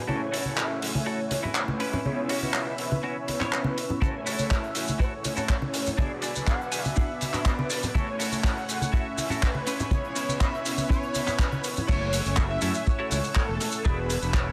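A thick, bold unison synth lead with dub echo sings over round synth brass, a lush, airy pad pumping in the background and a twangy, clean electric guitar riff, joined at once by a fuzzy fingered bass, close-miked congas and egg shaker and a dry, dark soul drum kit with handclaps, all opening this groovy, cosmic nu-disco excerpt in F# minor at 122 BPM, with a tight kick driving in up front from 4.0 seconds as filter sweeps on the synth lead and pad build toward the drop at 11.9 seconds.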